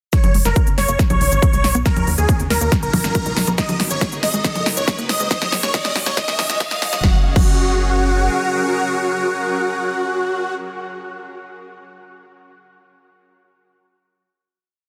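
A dense, heavily limited modern master with light digital ambience carries this euphoric uplifting trance piece, which builds under a filter sweep and drum fill until 7.0 seconds before settling on a final held chord. An overdriven four-on-the-floor electronic kick and a punchy big-room kit of crisp hats, snare, shaker, congas and crash drive the build, alongside a rolling sixteenth-note sequencer bass and a very quiet, detuned unison pluck arpeggio, while a background riser enters at 2.4 seconds. Up front, a huge supersaw lead plays a repeating riff with phaser, dub echo and sidechain pumping over a shimmering, ethereal pad that sustains into the closing chord.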